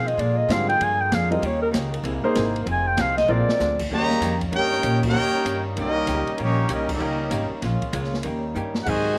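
A swinging 4/4 pulse at 194 BPM drives this energetic, brassy big band excerpt, with an up-front pizzicato upright bass giving woody, thumpy support and an open jazz kit adding dark cymbals, a boomy kick and drum fills at 3.3 and 8.5 seconds. A breathy clarinet carries the opening melody as a solo until 3.9 seconds, its whispered, intimate tone marked by scooped notes and light vibrato, while a grand piano with short sustain comps briefly beneath it. A clean, compressed hollow-body guitar sits in the background throughout, and a distant, roomy trombone section holds sustained chords. At 3.9 seconds a bright trumpet section takes over the melody with a soft attack, backed by a tight, mellow trombone section on a second line, and the band hits accents at 5.0 and 6.8 seconds. The harmony moves through dominant chords such as Bb7 and Eb7, with slapback echo on the clarinet, guitar and later horns giving the otherwise dry, reverb-light sound a vintage snap.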